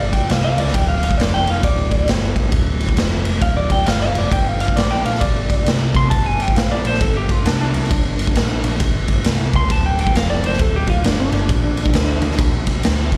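A lightly driven lead guitar, picked and slightly broken-up with slapback echo, leads a smoky, heavy blues rock and southern rock solo in D minor at 134 BPM with a swung feel, over a growling, overdriven picked electric bass that is dark and round and a raw garage drum kit of punchy kick, medium-tuned snare and ride cymbal that sits up front, gritty and saturated, all heard as a live club gig through the venue's PA in a small room before the cut at 13.2 seconds.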